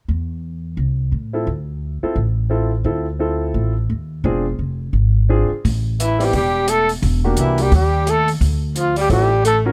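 A breathy, whispered trumpet carries the melody from 6.0 seconds over a distant, roomy tenor saxophone second line, joining a woody pizzicato upright bass that opens alone and a clear concert grand piano entering at 1.3 seconds, while a dark, compact cocktail drum kit adds hi-hat and punchy kick from 5.6 seconds in this smoky, cool small-group swing and bop jazz excerpt, closely and dryly recorded.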